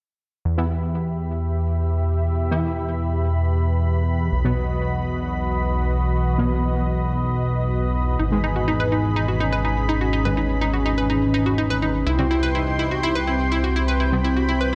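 Melancholic and dramatic, this techno passage at 124 BPM in 4/4 is cut from a longer piece and moves through Em, B, G#m and C. A lush, airy unison pad holds sustained chords under a filter sweep, while a fat, detuned sawtooth bass sits up front with a thick, evolving tone. Brassy, punchy synth stabs with chorus and tape echo stay in the background, and from 2.2 seconds a mellow, nasal analog drone with pulse-width modulation and a moving notch adds slow-building depth. At 8.2 seconds an expressive synth lead enters with smooth, dark vibrato, chorus, delay and gritty 12-bit sampler texture, joined by a round, bright analog pluck playing arpeggios with tape echo. Light reverb and digital ambience give the mix a gentle sense of space.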